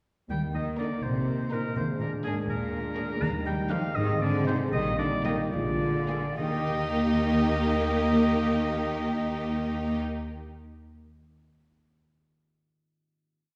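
A clear, lightly vibrato oboe carries the melody through this complete, playful and mischievous film cue in a lilting 6/8, joining at the very start. Beneath it, a warm French horn section holds sustained chords in the background, while a concert harp lets its fingerpicked broken chords ring across a broad span. The low end comes from a dark, soft-edged double bass section with expressive portamento and a bowed cello section that doubles the tune at the octave. From 0.8 seconds, violin sections and violas enter with rich vibrato, mixing pizzicato accompaniment with sustained chords; the violas sit noticeably forward of the softer violins. The music slows down from 2.5 seconds, settles onto a final chord at 6.4 seconds, and rings into a reverberant recital hall.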